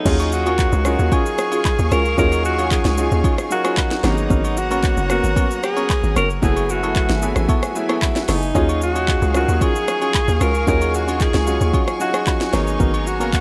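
A clear, punchy alto saxophone carries the melody with vibrato and scooped notes, its smooth top trailed by delay, over a soulful, deep amapiano groove in Eb minor at 113 BPM. Up front, a hollow, bouncy log drum bass with a fast attack and decaying tail anchors the low end beside an electronic afro-pop drum kit of deep kick, sharp snare, metallic hats, rim click, handclaps, shaker and crash cymbal. A natural grand piano plays accompaniment, while a lush studio string section holds bowed chords in the background with sidechain pumping. A dark, organ-like stab adds percussive hits treated with chorus and delay, and close, dry agogo bells and woodblock sit low in the mix. The chords move through Ebm11, Abm11 and Gbm11 in light reverb and small room ambience, and the recording is cut from a longer piece, with the drop running from 0.1 to 13.4 seconds.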